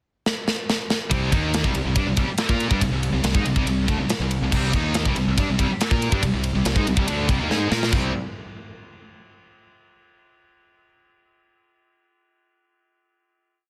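A dense, heavily limited small-room recording of aggressive, menacing hard rock opens with an up-front tight metal drum kit, with bright cymbals and a tight kick, playing a fill from 0.3 seconds; at 1.1 seconds a growly fuzz fingered bass drives eighth notes that double the power-chord riff of three picked electric guitars: a very quiet, double-tracked crunchy overdriven one, a high-gain distorted one and a scooped one in the background. A second drum fill then leads into a final chord at 7.9 seconds.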